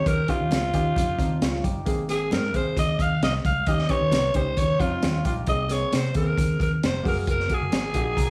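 Uptempo 1960s-style soul in Ab major at 133 BPM, this short, uplifting cut from a longer piece has a raspy alto saxophone carrying the melody up front, bright and gritty with light vibrato, slapback echo and plate reverb. A woody, slightly detuned upright piano accompanies over a round, foam-muted fingered electric bass and a crunchy breakbeat kit with a punchy kick, high-tuned snare and rolled-off top. Very quiet ringing congas add color, while a slightly broken-up electric guitar riff drops out after 2.1 seconds and returns at 4.8 seconds, over chords moving between Eb7 and Abadd9 before landing on Gbadd9.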